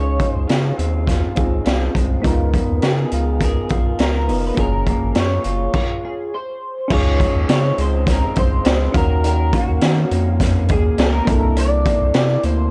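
A deep, round sine sub bass with tube saturation sits up front beside a raw, gritty garage drum kit with a boomy kick and a high-tuned snare in this hazy, laid-back indie and bedroom pop cut at 103 BPM in Db major. A bright, twangy electric guitar carries the melody through analog chorus and delay, over a lo-fi, slightly broken-up background guitar with warbly pitch drift and mellow, detuned electric-piano-like synth keys with cassette-tape character. The music halts for a stop between 5.7 and 6.9 seconds before a new section begins.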